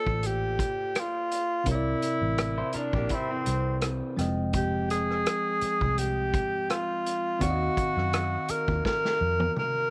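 A breathy, whispered tenor saxophone opens this lush 1970s-style soul passage, taking the melody up front over a bell-like, bright tine electric piano on a Bbmaj9 chord, all tuned slightly below standard pitch. The mood is smooth and romantic at 84 BPM in 4/4, with a gentle swing on the sixteenths as the harmony moves through C7, Fm7 and Ebm6. The saxophone is intimate and jazz-inflected, with soft attacks, scooped notes and vibrato, while a dark, round, foam-muted fingered electric bass and a vintage acoustic drum kit with a punchy kick, medium-tuned snare, rim clicks and a rolled-off top settle in underneath. From 2.6 to 4.2 seconds, a picked electric guitar through a small old amp adds a brief riff, slightly broken-up, compressed and lo-fi. The drums close with a fill starting at 8.8 seconds, and the drum kit's pumping small-room sound sits inside light reverb, giving this piece, cut from a longer performance, an intimate, vintage feel.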